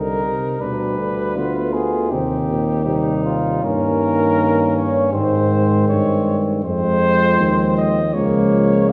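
Stately and warm, this brief classical brass quintet passage moves at 80 BPM in 4/4 with a rubato feel, settling into Ab major from 3.6 seconds. A dark trumpet carries the melody up front, its light vibrato and smooth top riding over the ensemble. Beneath it, a mellow flugelhorn sings a second line from a distance, while a dark French horn and a soft-attacked trombone with light vibrato fill in the accompaniment, the trombone sitting in the background. A clear tuba anchors the bass, placed up front alongside the trumpet. The harmony drifts from C minor through shadowed dominant colors before opening onto Ab and Fm, all heard from further back in a reverberant recital hall, and the fragment ends at 8.9 seconds as a cut from a longer piece.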